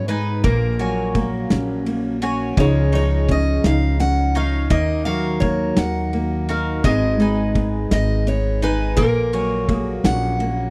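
A woody, thumpy pizzicato upright bass on gut strings sits up front in this pastoral, hopeful acoustic folk excerpt in 6/8, beneath a bright, full-bodied jumbo steel-string guitar picking the melody, a fingerpicked concert guitar with audible finger squeak, round double-string mandolin arpeggios and a loose indie kit with punchy kick, medium-tuned snare and dark ride cymbal in a pumping studio room, the dry mix moving through F#add9/A#, C#add9, D#madd9 and G#m.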